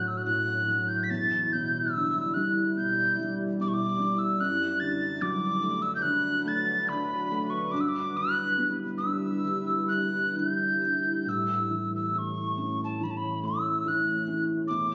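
Celtic folk slow air in A mixolydian, pastoral and tender, moving with a rubato feel at roughly 64-75 BPM in 4/4, cut from a longer piece. A hollow wooden whistle carries the melody up front with vibrato, tongued chiff and a pure tone, over a felt-muted upright piano whose soft, intimate accompaniment carries audible action noise, and a deep, moody ambient pad holding sustained chords with slow attack, chorus and built-in reverb. The chords pass from Dmaj7 through Em7, D6/F# and G6 before arriving on A at 11.3 seconds, all heard in a recital-hall reverb captured on a phone, giving a muffled, roomy sound with little top end.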